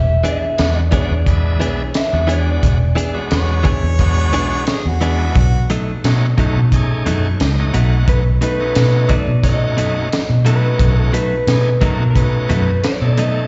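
A live-sounding, dark-topped recording heard through a venue's PA in a reverberant hall carries this gritty, swaggering straight-eighth soul blues excerpt at 88 BPM over E7 and B7, where a round, foam-muted fingered bass sits up front beneath a crunchy, saturated breakbeat kit with hi-hat, tight kick, high-tuned snare and tambourine, a clean, direct-recorded electric guitar plays picked stabs with spring reverb, a bright, shouting tonewheel organ with key click and slow rotary speaker accompanies and takes a fill from 6.7 to 8.1 seconds, a slightly broken-up, lo-fi guitar through a small old amp carries the melody with plate reverb and slapback echo, and a close-miked harmonica with vibrato and scooped notes adds a second line from 3.3 to 5.7 seconds.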